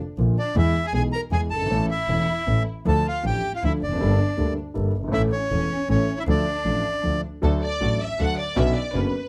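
Tango in 3/4 at 158 BPM with a rubato feel, this tense, melancholic fragment in D harmonic minor sets a reedy, bright bandoneon melody up front over an intimate concert grand piano, whose audible action noise and deep bass anchor the accompaniment beside a biting, nasal bowed double bass. A distant, lush symphonic violin section carries a soft-attacked second line with expressive vibrato. After the bandoneon stops at 7.2 seconds, the violins take over as the featured voice from 7.4 seconds, when background string stabs with portamento and tape echo also join in. The close, detailed microphones and dry room keep every part clear and detailed.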